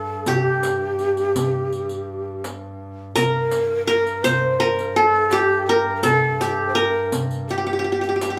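A wet studio reverb wraps this short excerpt of a Turkish makam ensemble playing live in one room, tuned to A4 = 438 Hz, with a hypnotic, soulful mood at 83 BPM in a straight 4/4. Up front, the qanun carries the melody between G4 and C5, its fingerpicked triple strings sounding bright-edged and warm. The breathy ney adds a second line in the same range, an end-blown reed cane heard close-miked with vibrato, a crisp attack and an unsteady tone. Beneath them, a single bowed double bass holds a low G2 drone that is rich and intense, with a smooth top and vibrato of its own. From 0.3 seconds the close, metal-shelled darbuka and the riq's dark jingles, played with soft hands, add percussion, and a drum fill arrives at 8.2 seconds just before the cut.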